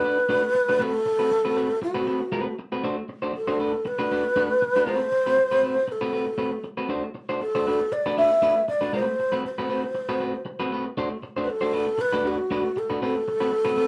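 An alto flute with a breathy, mellow, wooden-headed tone carries the melody from the opening moment, with vibrato and tongued notes that sound slightly unsteady and distant yet sit up front. Beneath it, a picked, compressed electric guitar on the edge of break-up plays accompaniment over a cycling Bm7, Am69 and D7 progression. This danceable, driving disco fragment is cut from a longer piece and is heard as a band playing live in a small room with a moderate ambience.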